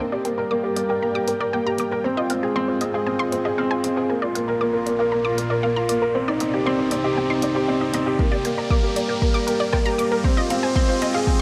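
Moving and hypnotic, this short build-up excerpt of piano-and-strings electronica at 117 BPM sets a soft, muted felt upright piano riff with delay up front over a lush, detuned sawtooth pad and a round, decaying analog pluck arpeggio, both chorused and pumping with sidechain, while an electronic riser sounds throughout, a deep house kit of hi-hat and rim click runs from 0.3 s, and a deep, up-front electronic kick arrives at 8.2 s, all in light reverb over chords moving from Gm through Fm7/Ab, Bb and Cmadd9.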